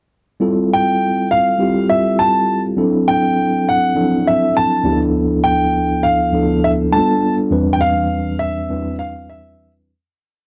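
A home cassette recording in a small booth with a wet ambience gives this short, smooth and lush soul piece its close, tape-tinged sound. A mellow tine electric piano, heard through its built-in speakers, plays clean rootless voicings with grace notes in halved chord rhythm, moving from Fmaj9 through D7 and G7 before settling on Cmaj7/E. A clear, intimate grand piano carries a hook-like motif high above, its action noise audible and its notes sustaining long, until the music fades out from 7.5 seconds to the end at 9.9 seconds.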